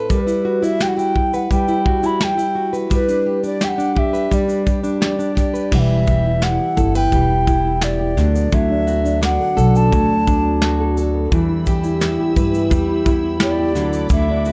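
This short excerpt of acoustic pop has a dark, warm production with light reverb, moving at an unhurried 86 BPM in a straight 4/4 with a heartfelt, sunny mood. A full-bodied, fingerpicked jumbo steel-string guitar sits up front beside a soft brush kit whose punchy kick, medium-tuned snare, shaker and crash sound like a small room, while an alto ocarina carries the melody with a clay, airy tone, crisp chiff on each attack and gentle vibrato. At 5.7 seconds a woody, dark pizzicato upright bass joins up front, and a small nylon-string guitar with fresh strings adds thumb-plucked arpeggios in the background. The harmony opens on Emadd9/G and G, then alternates between Em and Bm7. From 11.3 seconds a studio string section adds soft-attack sustained chords, bowed sul tasto with light vibrato and a smooth top, giving the close of the passage a tender lift.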